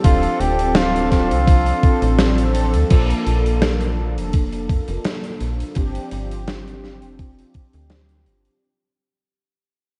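A woozy, nostalgic vaporwave fragment opens with a vintage-toned flugelhorn playing a short jazz-style line with scooped notes and tape echo. Beneath it sit a very quiet, warbling lo-fi pad and a round, detuned synth brass part with subtle chorus and vibrato. A snappy FM bass with a metallic attack and tube saturation sits up front beside a thumpy, sampler-style electronic kick, the loudest part, while a big acoustic rock kit adds crash cymbal, hi-hat and a medium-tuned snare from a bright stone room. The harmony moves from Dm7 to Bbmaj7 to G7sus4 over a light swing on the sixteenths. The flugelhorn drops out at 2.5 seconds and the pad at 2.9 seconds, leaving brass, bass and drums as the music fades out through 8.6 seconds. The production is dark and cassette-tinged, with a small-room reverb and the top end trimmed.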